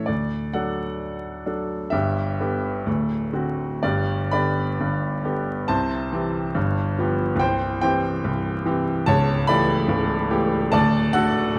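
A brilliant, up-front baby grand piano plays alone in this hopeful romantic character piece, cut from a longer work, moving in a rubato 2/4 at 58-73 BPM in G major. Its long sustain rings through a moderate recital-hall reverb, captured by close, detailed microphones under a vinyl crackle, as a brief opening gives way at 1.9 s to a longer passage that ends on D.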